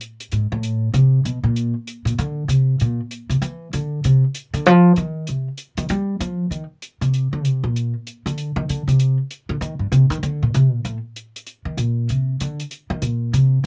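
An up-front, woody upright bass carries a sophisticated, relaxed jazz solo in small-group swing and bop style, plucked pizzicato on steel strings through two repeated sections from 0.3 seconds, while a faint, airy, polished hi-hat swings behind it in a dry outdoor setting in this short cut from a longer piece.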